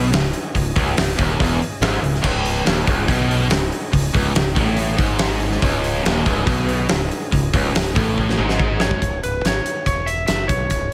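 A straight 4/4 hard rock groove drives along at 142 BPM in C# minor, with a big rock drum kit up front: a punchy kick, a fat snare, hi-hat and crash ringing in a big room. Underneath, a growling fingered electric bass adds overdriven bite, while two picked, low guitar riffs carry the heavy harmony: one overdriven and colored by phaser, the other tight and distorted, sitting further back. A very quiet, gritty tonewheel organ holds sustained chords through a slow rotary speaker, with vibrato and key click. A drum fill at 8.2 seconds leads into a change. The up-front, twangy lead guitar, slightly broken-up and compressed, enters at 8.8 seconds with a short melody, just before the riffing guitars and organ drop out at 9.0 seconds. The harmony moves from a C#5 power chord to C# minor, all in light reverb, in this driving fragment cut from a longer piece.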